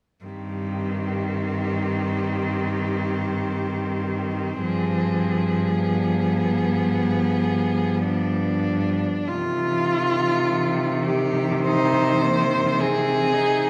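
A rich, focused cello carries the elegiac melody with vibrato over a second rich cello's accompaniment, a clear, bowed cello's second line and a clear, low cello bass, making a solemn classical excerpt in C minor that moves with rubato at roughly 47-57 BPM, passing from Cm/G to G7b9 at 4.6 seconds and resolving to Cm at 9.3 seconds, all bathed in a wet recital-hall reverb.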